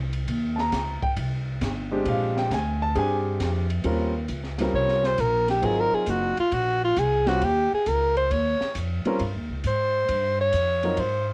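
This playful, relaxed slice of small-group swing and bop opens with a pizzicato upright bass that sounds woody, thumpy and gut-strung and sits up front. An open jazz drum kit joins almost at once on hi-hat, kick, ride and snare, with dark cymbals, a high-tuned snare, a boomy kick, small-room acoustics and a cassette-tape grain. An intimate grand piano with audible action noise comps from 0.6 seconds, set in Eb mixolydian at 134 BPM in 4/4 with a swung eighth-note feel. At 3.8 seconds the harmony moves to Eb13 and then Ab13, and at 4.8 seconds a clear, close-miked soprano saxophone takes the solo melody with vibrato, subtone and scooped notes, also carrying that cassette texture. Light studio reverb gives this home cassette recording a natural, easygoing space, and the clip is cut from a longer piece.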